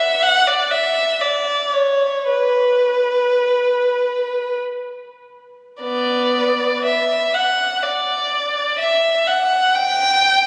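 Yearning and mournful, this brief classical fragment for unaccompanied violin in B minor unfolds freely in 3/4 at a rubato 45-66 BPM, with a single bowed violin up front, smooth and even with vibrato, ranging from B3 to G5 across its 10.5 seconds and bathed in a long, wet church reverb.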